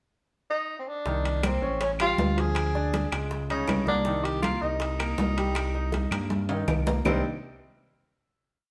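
Afro-Cuban jazz with a driving, sultry mood, this short complete piece opens with a subtoned tenor saxophone at 0.5 s, scooping into motif-based call phrases that sound distant and roomy yet sit up front. At 1.1 s much of the band arrives: a clear, present grand piano plays a long-sustaining montuno in octaves, and a smooth sawtooth-and-triangle synth bass lays down a mellow tumbao that anticipates the chords. Bright, thin-skinned congas with slaps and open strokes and tight, high-tuned bongos in steady eighths with hand bell come in with them. Ringing metal-shell timbales follow at 1.3 s with a close, dry shell pattern and bell, and woody claves join at 1.4 s carrying a two-bar time line. The harmony moves through dark minor-ninth, altered-dominant and diminished colors before settling. A drum fill at 5.9 s leads into a final held chord. The whole group plays live in one room, bathed in a stony reverb.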